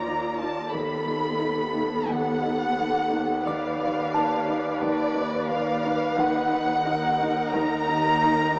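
The pulse is a straight, unhurried 4/4 at 88 BPM in this uneasy, tense suspense cue for film. Up front, a rich violin section carries the melody with soft-attacked, expressive vibrato, while a dark viola section fills in beneath it and a second cello section plays a focused, lush riff in the background. Low down, a warm cello section, a double bass section and a tense, detuned string-like drone with its own built-in reverb all hold an Eb, the drone's bright sawtooth edge and noise layer adding grit under the orchestra. A delicate, tinkling music box sits very quiet and band-limited throughout, and a taiko ensemble struck with hard sticks surfaces faintly from 0.7 to 2.1 s and again at 6.2 s. The harmony moves from Bb over Eb to Dm6 over Eb, then settles on Ebm at 6.2 s, all bathed in a vast cathedral reverb with vinyl crackle and a small-speaker tone.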